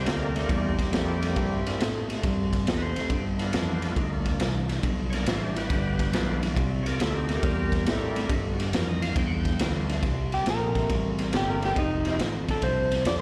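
A bright, twangy clean lap steel carries the slide melody up front from 10.3 seconds in this soulful, swaggering electric blues shuffle at 139 BPM in C mixolydian, moving through C7, G7 and F7. Underneath, a gritty, saturated garage drum kit pumps in its small room, a round fingered bass holds the low end, and a slightly broken-up guitar through a small old amp picks a spring-reverbed riff. A thick, lightly overdriven tonewheel organ with key click and slow rotary fills the accompaniment until 12.2 seconds, all heard as a live gig through the venue's PA in a recital hall's reverb, cut from a longer piece.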